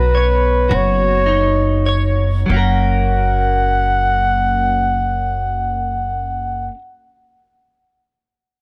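A slow, swaying 6/8 pulse of 31-38 beats per minute in dotted quarters opens this short pop fragment, and it slows down through the first 2.5 seconds. In F# major, the heartfelt passage moves from a Badd9 chord to F# as a new section begins at 2.5 seconds. A close-miked flugelhorn carries the melody up front, its warm tone shaded with light vibrato. Beneath it, a picked, clean electric guitar, bright and compressed with a scooped edge, is double-tracked and sits a little lower in the mix as accompaniment. A woody, thumpy upright bass, plucked on steel strings, holds the low end up front. Light reverb and studio ambience give the whole a soft sense of room, and the clip is cut from a longer piece.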